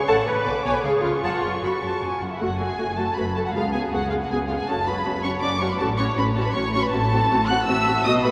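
In a quick, straight 3/4 at 159 BPM, this urgent, stormy classical-period movement for string orchestra in F# minor drives forward across a brief 8.3-second cut from a longer piece. A dark, expressive first violin section carries the melody up front with vibrato and portamento, while a smooth, even second violin line and a focused viola accompaniment, also up front, fill the middle. Lush cellos and a rich double bass section anchor the bass, all bathed in a wet cathedral reverb.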